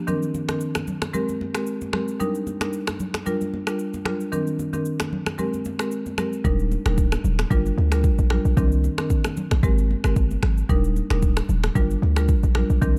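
Dark, dry production frames this romantic, sunny afrobeats excerpt at 113 BPM with a lightly swung 16th feel, where a woody, up-front marimba cycles through Cm9, Abmaj9, Ebmaj7 and Gm7 over an electronic afro-pop kit of deep kick, finger snaps, rim click and shaker, while saturated, high-tuned congas add a bright edge before a punchy, heavy 808-style bass enters up front at 6.4 seconds.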